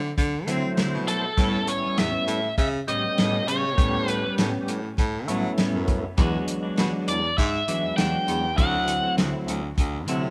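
Straight-eighth soul blues with a rollicking, soulful mood, cut from a longer piece and played live in a stone room, where a baritone saxophone with subtone and scooped notes carries the bass, a dry, muffled drum kit with a tight kick sits up front, a percussive tonewheel organ with light overdrive and slow rotary speaker fills the accompaniment, a dark, clean electric guitar adds stabs through spring reverb and analog delay in the background, and a biting, overdriven lead guitar plays the melody from 1.1 to 9.1 seconds over D9, A9 and E9 chords.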